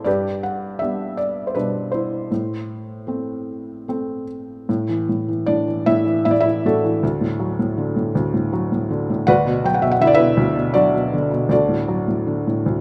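A felt-muted upright piano, soft and intimate with audible action noise and short sustain, plays alone and up front from 0.0 to 12.8 s across D2 to G5 in this dark, wistful piece of lyrical classical solo piano, cut from a longer work, moving in a rubato 3/4 at 74-82 BPM in A dorian (tuned to A4 = 439 Hz) through G and Am before shifting at 4.7 s to a passage on A5, D and Bm/D, all set in a moderate concert hall reverb over a faint mains hum.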